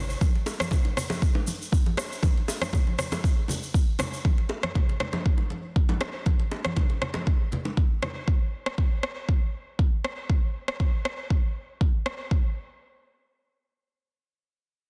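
Driving, straight afro house groove with a hypnotic pull, built on a deep, up-front electronic kick and an overdriven rim click. Grainy, distant tube shaker runs until 4.2 seconds, and thick-skinned congas and tight, high-tuned bongos under hard hands join before dropping away at 8.1 seconds, leaving the kick and rim to carry this dense, heavily limited fragment cut from a longer track.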